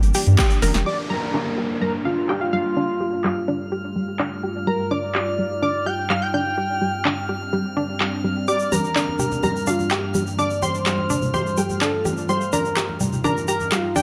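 A steady, straight 4/4 pulse at 126 BPM drives this dreamy progressive house passage in G minor, cut from a longer piece. It opens on a quick band accent, with a punchy, overdriven electronic kick landing at 0.4 s beside a short burst of round, deep analog bass, a grainy shaker and distant congas and bongos. A drum fill follows at 0.6 s. Throughout, a deep house kit with metallic hats, a punchy snare and handclaps carries the groove up front, passing under a filter sweep from 0.9 s, while a downlifter falls away through the opening seconds. Above a morphing, detuned wavetable pad and a sawtooth analog pluck spinning arpeggios through chorus and dub echo, a smooth, expressive lead sings with vibrato and cassette-tape colour. A crystalline wavetable pluck with 12-bit grit traces a second line above it, and a faint haze of drifting glass harmonics hangs over everything. The chords move from Gm through Fadd9/G, Ebadd9/G and G7sus4 before cycling back. 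At 8.5 s the shaker and hand percussion return, and the parts that carry sidechain pumping breathe with the beat inside a moderate stage reverb.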